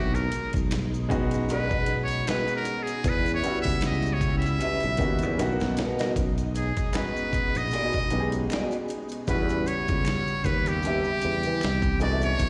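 A buzzy, up-front metal-muted trumpet solo opens this smooth, soulful neo-soul passage in B major at 77 BPM with a 16th-note swing, over shimmering vintage string-machine violins and a growly fretless electric bass, as a gritty, compressed sampler-style drum kit with a thumpy kick joins along with quiet maracas and finger snaps. A woody, intimate upright piano with audible action noise enters at 1.1 seconds and a slightly broken-up, lo-fi electric guitar with lush chorus adds a second line from 1.5 seconds, while a drum fill at 5.4 seconds closes the trumpet solo and leads into the next section. Slapback echo touches the trumpet, piano, guitar and percussion, and the whole sounds like a live gig heard through the venue's PA in a recital-hall reverb.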